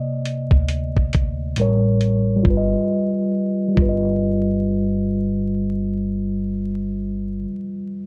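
Reflective and melancholic, this slow lo-fi hip hop fragment at 68 BPM swings gently as a mellow tine electric piano, up front with a cassette-tape haze and a filter sweep through the first 2.4 seconds, moves through Cm9, A7b9 and G7b13. A gritty, compressed sampler-style kit of hi-hat and thumpy kick sits forward until it stops at 4.1 seconds, while a woody pizzicato upright bass plucks low underneath. A dark, warm production, moderate room ambience and vinyl crackle frame this short cut from a longer piece.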